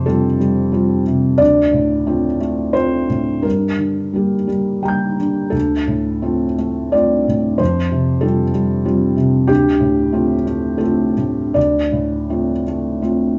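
Intimate and wistful, this neoclassical minimalist piano piece moves in a loose, rubato three-beat pulse, its harmony drifting from Fadd9 through Dm7 and Gm and back. A felt-muted upright piano plays alone from 0.0 to 13.4 seconds, spanning D2 to G6 with a dark, boxy tone. It sits up front with its action noise clearly audible, recorded live within a wet, large studio reverb. This is a short passage cut from a longer work.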